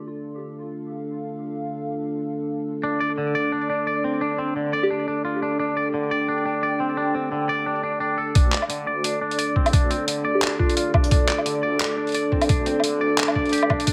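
This cinematic, spacious excerpt of swung, half-time drum and bass at 174 BPM in D minor opens with a moody, detuned analog pad with 12-bit sampler grit and sidechain pumping, sustaining alone before a clean, twangy electric guitar enters at 2.8 seconds with filtered, delayed arpeggios. A round, keys-like FM lead drifts in the background with brief dub-echoed phrases. At 8.4 seconds a build-up begins as a thumpy, pitched-down electronic kick and a gritty, tape-warm boom bap kit of handclaps, hi-hat and woodblock arrive up front, joined by a deep, very quiet wobbling bass, all set in a moderate digital room reverb.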